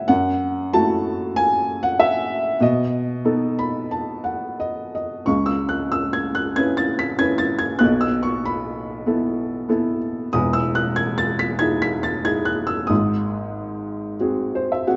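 A felt-muted upright piano plays alone from the first moment, its tone muted, boxy and intimate, with audible action noise and short sustain sitting up front in a moderate concert hall reverb, and the top end rolled off. This lyrical classical solo moves at about 94 BPM in 4/4 with an uneven, rubato pulse and a hopeful, sunny mood, spanning from deep bass to high treble across chords from F#m7 and B7 through C#m7, Emaj7 and G#7. Piano fills arrive at 3.2 s and 14.2 s, with a new passage opening at 5.3 s in this excerpt cut from a longer piece.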